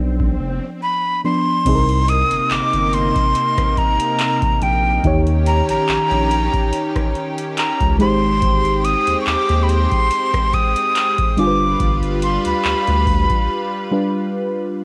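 Late-night and moody, this slow contemporary R&B cut in C minor sits at 71 BPM with a light sixteenth-note swing. A short electronic swell and a mellow, round FM electric piano treated with chorus and phaser open over a thick, saturated sub bass and a booming analog drum machine with deep kick, metallic hats, handclaps, rim clicks and crash. A breathy, bright jazz flute carries the melody with vibrato and a crisp chiff, its tone colored by cassette tape. At 1.7 seconds a lush, detuned unison pad enters with sidechain pumping over a Cm7, Eb7, Abmaj7 and G7 progression, and the drums drop out for a break at 13.5 seconds in this dry, up-front home cassette recording.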